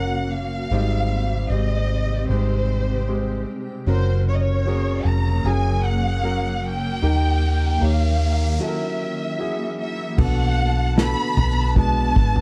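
A dark, warm small-room production frames this tender, hopeful 76 BPM pop ballad excerpt, where a lush, distant violin section carries the melody over a concert grand with audible action noise, a cloudy granular pad, a picked steel-string acoustic guitar's background arpeggios, a round, foam-muted electric bass up front and very quiet electronic downlifter and riser effects, until at 10.2 s a focused second violin line and a punchy acoustic drum kit played with bundle sticks join on a Bm7 chord after a brief break.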